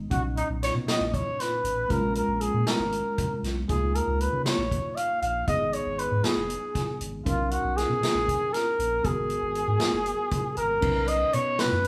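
A breathy, whispered trumpet leads this short fragment of a progressive instrumental, playing a dark, intimate jazz-style solo with vibrato and a soft attack. The mood is tense and intricate, set in an uneven 7/8 metre with a straight feel. Beneath it, a mellow tine electric piano supplies chords through its built-in speakers, moving through Bmaj7, A#m7, C#6, G#m, Bmaj7 and G#m7 before settling on Badd9 at 10.8 seconds. A pure sine sub bass sits deep and smooth underneath, its fast attack and sustained tone adding a clean, shadowy foundation. The acoustic street-band drum kit, with a boomy kick, medium-tuned snare, hi-hat and crash cymbal, sounds distant yet sits up front. The whole band plays live in one room, wrapped in a moderate stone-room reverb.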